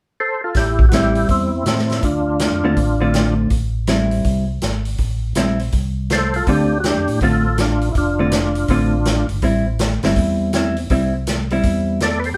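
A percussive, lightly overdriven tonewheel organ carries the melody up front through a slow rotary speaker and chorus vibrato, in phrases starting at 0.2, 6.1 and 12.0 seconds, over a fat tonewheel organ bass line with key click, a dark, clean hollow-body electric jazz guitar in accompaniment and a roomy big-band drum kit with a boomy kick, in a soulful, late-night soul jazz organ trio excerpt swinging at 162 BPM in A minor, moving between Am7 and Dm7 in a moderately reverberant live room.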